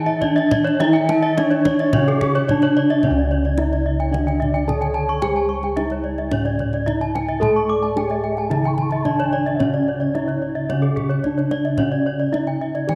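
In a straight 4/4 at 110 BPM, this ceremonial, brilliant Balinese gamelan excerpt in C# pelog shimmers with paired-tuned bronze metallophones: a dark, smooth wooden-mallet melody over a background accompaniment, while two bright, close-miked horn-mallet parts spin arpeggios above, one with slapback echo; mellow padded bossed gongs hold the bass, a tight, dry kendang struck with hard hands enters at 0.2 seconds, and a breathy, soft-attacked bansuri with slapback echo plays a second line from 0.9 to 10.7 seconds, all inside a wet echo-chamber reverb.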